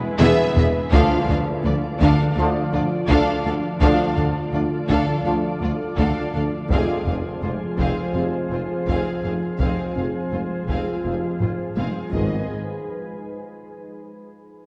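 A cinematic hybrid of orchestral and electronic film score, this brooding, vast passage moves at 83 BPM in a straight 4/4 and is cut from a longer piece. A glassy FM pad with ensemble chorus and built-in reverb holds ethereal sustained chords from the start, while a dark, ringing harp-like synth pluck spins soft arpeggios beneath it. From 0.2 seconds the string sections enter: violins carry an expressive, vibrato-rich melody with a second, even line in the background, violas add focused accompaniment, and very quiet cellos and woody double basses join a distant, roomy tuba on the bass. Solo taiko drums struck with hard sticks in a small room open with a fill and return with another near the close, and from 0.9 seconds a mellow French horn section and a clear, present trombone section add very quiet sustained chords. The harmony drifts from E through D minor and F minor to G-sharp minor before the parts fall away at 12.5 seconds, with only the taiko sounding until 13.5 seconds. 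The whole mix sits in a wet concert hall reverb with the worn, warbly pitch drift of old cassette tape.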